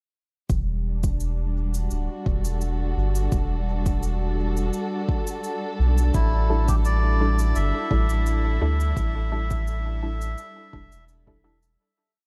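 A dry, close recording carries this short, deep and meditative ambient dub piece in E minor at 85 BPM, built on a soft, round sub bass up front, an overdriven electronic kick with a soft, slow pulse and a sparse, echoing overdriven cabasa, while a dark chamber string section holds slowly shifting sul tasto chords roughened by vintage 12-bit sampler grit. At 6.1 seconds the harmony moves from Em11 to A7sus4 and a reedy, breathy melodica enters with a free, dub-echoed line, soon joined in the background by a muted, filtered sawtooth chord stab playing off-beat chords through chorus, cassette tape and dub echo. The whole piece fades out from 8.0 seconds to its close at 11.8 seconds.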